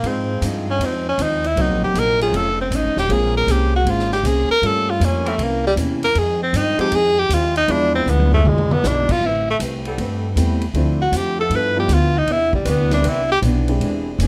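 Brassy and swinging, this big band jazz passage is led by a bright tenor saxophone soloing up front with light vibrato, soft attack and scooped notes, set in plate reverb, over a woody pizzicato upright bass and a natural-sounding drum kit, with a boomy kick, that plays a short fill at 8.1 seconds. A tight saxophone section holds smooth sustained chords in the background beside a boxy, picked steel-string acoustic guitar with audible finger squeak, while an intimate grand piano with short sustain and audible action noise enters at 1.6 seconds. The sound is close and detailed within a moderate club ambience, and the passage is cut from a longer piece.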